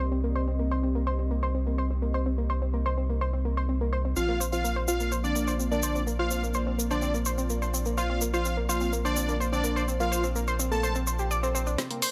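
Melodic techno with a dark, dramatic mood, this excerpt opens on a deep, moody pad holding sustained Cm7 chords in the background, a detuned sawtooth analog pluck running arpeggios under a filter sweep with delay, and a round, up-front analog bass, all breathing with sidechain pumping. At 4.2 seconds the harmony moves to Bb as a thick unison lead takes the melody with vibrato, tape colour and delay, a fat polysynth adds a second line above it, and a grainy egg shaker sits close and dry. At 11.8 seconds a short drum fill arrives, with a woody snare, dark hats and a deep electronic kick in a small room.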